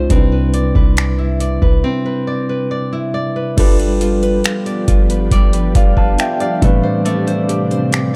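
This contemporary R&B excerpt moves at a slow 69 BPM in straight 4/4, carrying a longing, sensual mood through a dark production with little reverb. A booming analog drum machine sits up front with a deep kick, metallic hats, finger snaps and crash cymbal, its overdriven sound re-recorded in a small room, while a clean, sine-like 808-style bass with a fast attack and decaying tail rumbles in the background. A tine electric piano, clean and played through its built-in speakers, holds the accompaniment up front, and a fingerpicked nylon-string guitar adds classical-toned arpeggios with audible finger squeak and tape echo. The harmony moves from Cmaj9 to G7 at 3.6 seconds and then to Am11 at 6.6 seconds, with a break between 1.8 and 3.6 seconds. An ethereal, airy pad of detuned unison voices with a sub octave, ensemble chorus and its own reverb fades in slowly at 4.4 seconds, lending a mellow, sustained glow to the closing bars.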